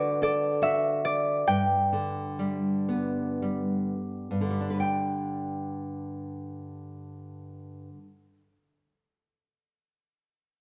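A ringing concert harp carries the tender melody of this gentle children's lullaby in G major, sitting up front and falling silent at 3.4 seconds. Fingerpicked nylon-string guitar, classical in tone and also up front, supports it throughout, moving from D to G in a straight 3/4 at 50-76 BPM that slows over the first 4.6 seconds. A moderate recital-hall reverb wraps the dark, warm production of this fragment cut from a longer piece.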